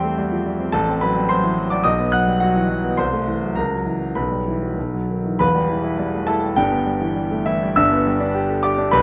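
A clear, up-front concert grand rings out in a recital hall's moderate reverb, its deep bass and long sustain giving weight to this agitated, passionate classical piano study in E minor, cut from a longer piece and tuned slightly low to A4 = 437 Hz. The solo piano ranges from E1 to F#6 in a flexible 2/4 at roughly 95-108 BPM, with rubato pushing and pulling the pulse as the harmony passes through diminished and dominant-seventh colours before settling on B. At 5.4 seconds a new section begins, grounding itself on E minor and turning toward G major by 7.8 seconds.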